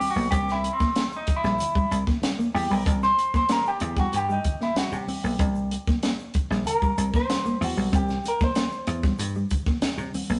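A clean electric guitar solo opens over a strutting, gritty funk groove at 95 BPM in straight 4/4 and C mixolydian, resting on a C7 chord. An up-front, dark, picked semi-hollow guitar with wah plays the accompaniment, a fingered, mellow guitar riff sits in the background, and a compact cocktail kit brings a high-tuned snare and punchy kick, with very quiet soft-handed congas and a grainy egg shaker beneath. A dry, foam-muted thumbed slap bass joins at 0.2 seconds, and the whole piece, cut from a longer performance, carries a moderate stone-room reverb and the rough, dulled sound of a rehearsal-room recording.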